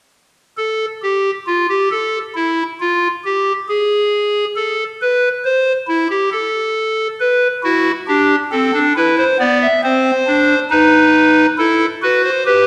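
In a straight, steady 4/4, this contemplative yet driving excerpt from a baroque-style fugue features a solo pipe organ on a hollow clarinet reed stop, entering at 0.6 s with chiff and baroque voicing, placed up front in a wet recital-hall reverb.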